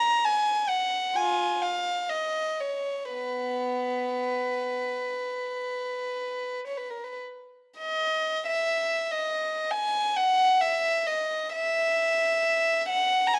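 Lyrical and serene, this classical piece for unaccompanied violin unfolds with a free, expressive rubato, its pulse drifting between 39 and 72 BPM in 4/4 and resting in B major, tuned to A4 = 444 Hz. A single bowed violin plays alone for the full 13.4 seconds, ranging from B3 up to A#5, and it sits up front and close, captured by detailed microphones. Its tone is warm, pure and floating, with a soft attack and an airy bow drawn sul tasto, lending the line a gentle glow. A moderate recital hall reverb, with a decay of 1.4 seconds, gives the instrument a natural sense of space around it. The passage moves from an opening section into a second one at 7.8 seconds, and as a fragment cut from a longer work it feels like a brief, suspended moment of reflection.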